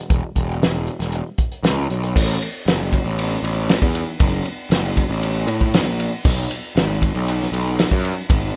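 Wistful yet carefree, this short indie rock excerpt in A major moves at a straight 117 BPM in 4/4, pairing a bright, growly, overdriven fuzz bass picked up front from E1 to A2 with a loose acoustic drum kit of fat snare, tight kick, hi-hat, ride and crash in a small, dry room, all heard as a rough home demo that shifts into a new section at 2.2 seconds.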